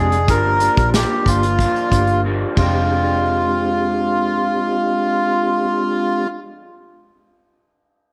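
A reedy, breathy melodica carries the melody up front with lush chorus and slapback echo, opening this wistful, hazy indie-pop and bedroom-pop fragment at 92 BPM in F dorian alongside a dark, slightly broken-up lo-fi electric guitar in the background, a soft, flute-like tonewheel organ with key click, chorus vibrato and fast rotary speaker on cassette tape, and a round, foam-muted picked bass, while an acoustic drum kit played with bundle sticks on tight kick, snare, hi-hat and ride enters at 0.1 s, fills from 2.2 s and stops at 2.7 s, as the chords move from Gm7 to Fm69 in a moderate plate reverb.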